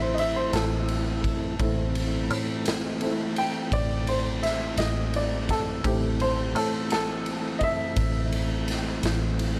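Mournful and smoky, this short slow blues in a straight 12/8 sits on a single minor chord and drifts through a dreamy haze of plate reverb. A woody, slightly detuned upright piano takes the solo spotlight from the start, its present, short-sustained notes carrying the lament over the whole passage. Beneath it a soft, flute-like tonewheel organ holds clean sustained chords through a slow rotary speaker, a key click at the edge of each touch. A dark, foam-muted electric bass supplies round, amped low notes, while a raw garage drum kit joins at 0.2 seconds with kick, snare and ride cymbal. The drums sit up front with a gritty, saturated punch and a pumping stone-room sound that contrasts with the mellow keys around them.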